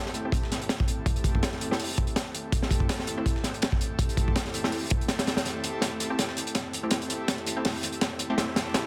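An airy, detuned pad opens this frenetic, atmospheric drum and bass excerpt at 164 BPM in A minor, holding a sustained Am7 with chorus and 12-bit sampler grit while a saturated, up-front breakbeat kit with a punchy kick and high-tuned snare drives the build-up, joined by a very quiet, pitched-up sampler-style break, as bright, layered orchestra-hit-like synth stabs sit in the background through cassette-tape colour and dub echo, with a drum fill arriving at 5.5 seconds.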